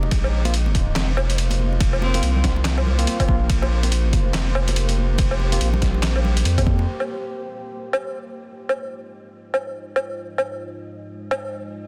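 Brooding and meditative, this deep dubstep moves at 142 BPM with a swung half-time feel in F minor. It opens on a drop where a thick, saturated sub bass and an overdriven electronic kick sit under a gritty, pitched-down sampler-style trip hop kit of snare, handclaps, hi-hat, ride and woodblock, while ringing congas and a barky tine electric piano, low-pass filtered and trailing dub echo, stay in the background. A detuned sawtooth ambient pad with chorus holds sustained chords throughout, and a clear bowed cello sounds a single C4 with vibrato at 2.0 seconds; at 6.9 seconds the bass, kick and congas stop as the harmony moves from Bbsus2 to Fm7 and a filter sweep runs over the pad, all within a dense, heavily limited master.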